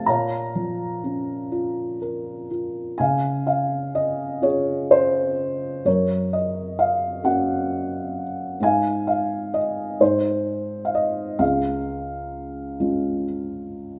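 Calm and peaceful, this lyrical classical excerpt for solo felt-muted upright piano unfolds in a rubato 6/8, its soft, dark, boxy tone sitting intimate and up front in a moderate reverb as chords drift from Bbm through Gb and Fm7/Ab before settling on Db near 11.4 seconds.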